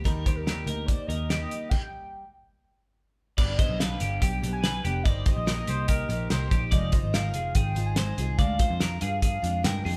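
A cloth-damped, thuddy drum kit sits up front with a fat snare and dark cymbals, driving this wistful, restless excerpt of jangly indie pop in straight 4/4, with a band stop from 1.7 to 3.4 seconds. A bright, twangy twelve-string electric guitar plays arpeggios over a full-bodied picked steel-string acoustic and a round, foam-muted vintage electric bass, while a velvety, wave-folded synth lead carries the melody through chorus and phaser with vibrato. A brief trumpet second line with scooped notes and light vibrato appears at 5.7 seconds, all captured with light reverb like a band playing live in one room.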